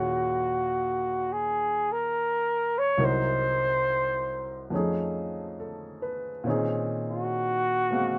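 A smoky, intimate jazz ballad moves at a slow 69 BPM in 4/4 with a gentle swing on the eighth notes, cut from a longer piece. A breathy flugelhorn carries the melody throughout its 8.2 seconds, its mellow, whispered tone shaped by light vibrato and a soft attack, sitting up front yet with a roomy, distant air. A baby grand piano accompanies from start to finish, natural in tone with a short sustain, placed close and spanning from deep bass up into the upper register. The harmony drifts through Ebm11, Cm7b5 at 3.0 seconds, F7alt and Bbm11, giving the passage a dusky color. Light reverb wraps the whole in a hushed, late-night atmosphere.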